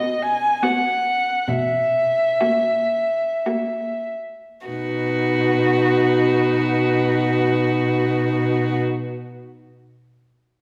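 In a rubato 3/4 that slows over its first 4.7 seconds and ranges between 48 and 77 BPM, this lyrical, slow romantic movement for string quartet in B major is cut from a longer piece. All four players bow with mutes, con sordino and with vibrato: the up-front first violin sings a veiled melody with portamento, and a close second violin holds a soft-attack second line. A distant viola adds dark accompaniment with its own sliding portamento, the cello enters on the bass at 1.5 s, and a wet recital hall reverb places the listener further back in the room.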